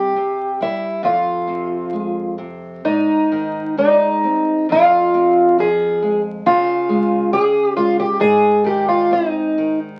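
Longing and passionate, this rubato fado-style ballad in Ab major, cut from a longer piece, drifts at about 67 BPM in an uneven 2/4 as a shimmering, octave-doubled fingerpicked twelve-string archtop carries the melody up front until 9.8 seconds over a small, fingerpicked nylon-string guitar accompaniment, both bathed in wet studio reverb and the crackle of a very old 78 rpm record.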